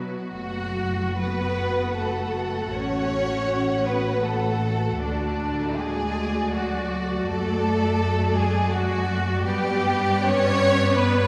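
Melancholic and yearning, this slow romantic movement for string orchestra moves in three with a rubato feel, cut from a longer piece. Violas, cellos and a violin section carrying the second line begin together, double basses join at 0.3 seconds and a higher violin melody enters at 0.4 seconds, every part bowed with vibrato in a lush ensemble sound. The second-line violins are clear and intense, the violas smooth, the cellos focused, the basses rich and up front, and the melody warm on top, all set in a wet church reverb within a dark production.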